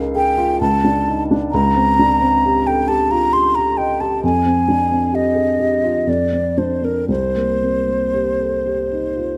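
An airy, hollow concert flute carries the melody from 0.2 seconds, its tongued notes shaded with vibrato and placed up front, in this wistful, mysterious impressionist classical duo cut from a longer piece. A dark, vintage-toned baby grand piano accompanies from the start with smooth, mellow voicings, moving through colourful harmonies from Db and Aadd11/C# to Fm9 and a closing Cm7. The unhurried rubato in 3/4, around 57-67 BPM and tuned to A4 = 441 Hz, is captured by close, detailed microphones with light reverb.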